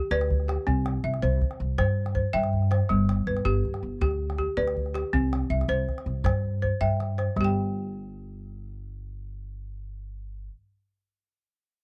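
A steady 12/8 pulse at 107 BPM carries this joyful, flowing fragment of West African traditional music, where a dry, round balafon struck with hard rubber mallets spins up-front arpeggios over G and C while a close, woody pizzicato upright bass on steel strings anchors the low end and a deep calabash, heard in a small room, adds percussion before falling silent at 7.5 s, with a drum fill arriving at 6.4 s.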